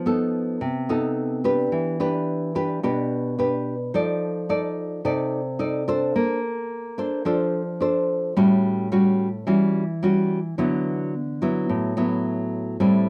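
Bossa nova in D major at 108 BPM, this breezy, sunny passage, cut from a longer piece, features a lone fingerpicked nylon-string guitar with a dark, woody, full-bodied tone from old strings, set up front in a moderate studio reverb. The guitar moves through F7#11, Em7, F6, Bbmaj9 and A6 before the music shifts into a new section at 10.6 seconds, settling on a D69 chord.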